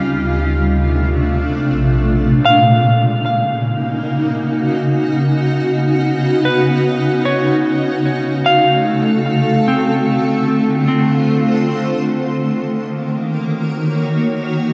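Ambient music, reflective and serene, moving at 75 BPM in 3/4, cut from a longer piece. A cloudy, evolving granular pad sits up front with full-bodied sustained chords, its slow attack and long release blurring each change as the harmony moves from Dm7 and Bb7 into Ebm7, Badd9 and Gbm. A clean, dark electric guitar picks arpeggios through spring reverb and tape echo until 13.0 s. In the opening moments a deep, round sub bass anchors the low end, while a glassy texture of drifting overtones with chorus stays in the background, and both parts stop by 2.5 s. A huge ambient reverb with a long tail surrounds the mix.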